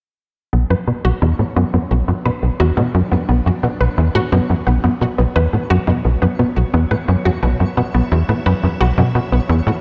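A tight, punchy sequencer bass with a nasal sawtooth edge drives this expansive, hypnotic slice of ambient space music in B minor at 87 BPM, entering at 0.5 s alongside bright, detuned unison-pluck arpeggios soaked in tape echo and shimmer reverb, while a filter sweep moves across the bass and a touch of chorus and tape echo colour it. Beneath them a vintage string machine holds very quiet, full-bodied sustained chords on a steady Bm, and from 1.0 s a faint, sparkling granular texture twinkles on a high C#5. The dark production sits in a moderate plate reverb, with the bass and plucks up front.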